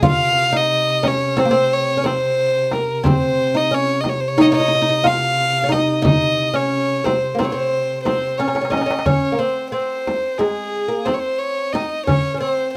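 This Turkish makam ensemble piece moves at 179 BPM counted in eighths across a 9/8 metre with a straight feel, set in C makam kurdi with A4 tuned to 441 Hz, and its mood is hypnotic and longing. A single warm violin carries the melody up front, its close, intimate sound played sul tasto with an airy bow, soft attack and light vibrato. Beneath it a fretless oud, plectrum-plucked on double strings, adds a woody second line, while a dark duduk holds a folk-style drone on C3 with its own vibrato until 9.1 seconds. The rhythm comes from a crisp, metal-shelled darbuka played with soft hands and a deep frame drum, and a drum fill from 8.4 seconds leads into a second section. The fragment, cut from a longer piece, sits in moderate studio ambience with a rough home-demo mix.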